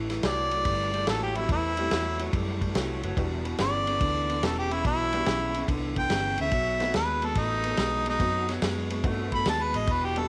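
A small-room sound with light reverb frames this brooding, soulful electric blues shuffle excerpt, where an overdriven harmonica solo sits up front with light vibrato, scooped notes and tongue slaps over a slightly broken-up, lo-fi guitar riff, a dark, round muted bass, a dry soul drum kit of tight kick, snare and ride, and a jangly, detuned honky-tonk upright piano that enters in the background at 1.1 seconds.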